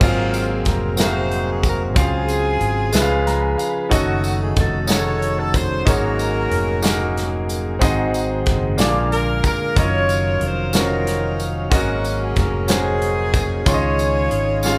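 Slow gospel in 6/8 at 62 BPM, soulful and jubilant, heard as a short cut from a longer piece where the whole band plays live in one room with light reverb. A loose, up-front saxophone section carries the melody with light vibrato. Beneath it, an intimate grand piano with audible action noise adds a fill from 2.9 to 3.9 seconds, a smooth tonewheel organ with chorus vibrato, key click and a stopped rotary speaker holds sustained chords in the background, and a round, punchy fingered electric bass sits under tight acoustic drums and a jingly tambourine, moving through rich chords like Ab13, Gbm6 and Ebm9 before landing on Dbmaj9.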